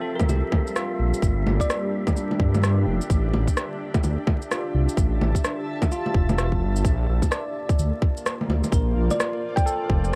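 Vinyl crackle and a digital ambience frame this rainy, wistful future garage excerpt, which moves at 128 BPM in 4/4 with a 16th-note swing. A bell-like tine electric piano, clean and direct, carries the accompaniment with tape echo, while a blurred, cloudy granular pad holds sustained chords through its own reverb. Both parts pump with sidechain compression, as does the menacing, detuned saw bass, which sits saturated and up front with a filter swell. Tape-warm electronic kick drum, bongos, shaker and rim click, re-recorded in a small room, drive the groove, and an airy, breathy wind-like texture drifts in the background until 6.9 s. A round, warbling thumb-piano-like synth pluck with chorus and analog delay sings brief melody fragments, returning at 9.1 s after the harmony has moved from Gm7 and Dmadd9/A to Bbmaj9 at 6.9 s.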